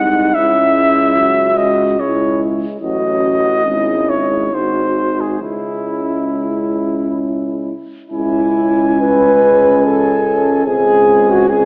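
Heard through a narrow, AM-radio filter and bathed in the wet reverb of a large scoring stage, this short excerpt of a longer classical piece for brass band has a solemn, hymn-like gravity and a melancholic air. Set in a gently swaying triple time with a rubato feel, it places a mellow solo cornet up front on the melody, its soft attack and light vibrato giving the line a tender, singing quality. Beneath it, a French horn section carries a second line from a distant, roomy position, blending as a glowing ensemble. The accompaniment comes from a vintage-toned euphonium and a trombone with a smooth top, both sitting in the background with light vibrato. A present tuba anchors the bass with a soft attack, and all five parts play together throughout, giving the passage the feel of a reverent chorale that is over almost as soon as it begins.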